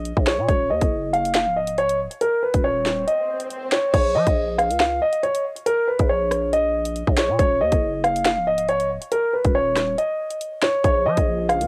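A half-time drill groove of hard-clipped kick, sharp snare, warm hi-hats, rim clicks, finger snaps and crash sits up front, with the kick dropping out at 3.1 seconds under an electronic swell that runs from 2.8 to 3.9 seconds, before a brief break at 10.0 seconds. A dark, mellow concert grand piano carries the cold, menacing melody through cassette-tape grit and tape echo, while a growling, buzzy 808-style bass with a fast attack rumbles beneath it over minor chords. An ethereal, airy pad with ensemble chorus slips in faintly in the background at 11.0 seconds, just before this excerpt of a longer hip hop piece cuts off, all within a lightly reverberant, home-cassette sound.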